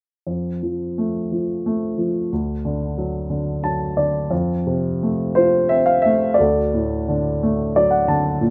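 Tender and calm, this lyrical classical piece for solo piano unfolds in a slow 6/8 with a free, rubato feel, its harmony moving between F and D chords. A dark, mellow baby grand sits up front, ranging from D2 to A5 and adding short fills from 3.3 to 4.3 seconds and again from 7.4 to 8.4 seconds. A moderate studio reverb gives the playing a natural sense of space in this short section lifted from a longer work.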